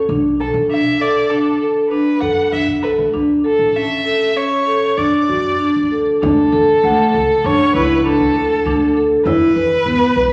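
A ringing, metallic vibraphone opens this restless yet hopeful excerpt of contemporary chamber music in 5/4 at 98 BPM in D major, its arpeggios joined by a woody, thumpy pizzicato upright bass and a rich bowed violin melody full of expressive vibrato and portamento, while a hard-handed frame drum enters in the background at 6.2 seconds and a delicate, bell-like celesta adds texture from 6.8 seconds, the ensemble set in a wet concert hall reverb.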